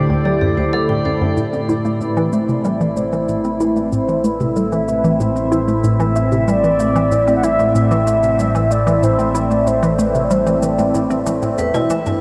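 Luminous and cosmic, this excerpt of sequencer-driven space music moves at 94 BPM in a straight 4/4, bathed in a huge, dreamy reverb with a cassette-tape tint. A swirling, nasal analog pad holds sustained chords up front through the phaser and chorus, while a hollow, bouncy square-wave pluck repeats a detuned riff with delay beneath it. A vintage analog drone sits in the background as the bass, fading in from 1.4 seconds along with the electronic shaker and toms. Metallic, ringing vibraphone arpeggios appear briefly at the opening and again near the end, and a round, horn-like synth lead carries a mellow, warbling melody from 2.0 to 11.6 seconds. The harmony moves from D7sus4 to A minor, settling on E minor in the closing moment.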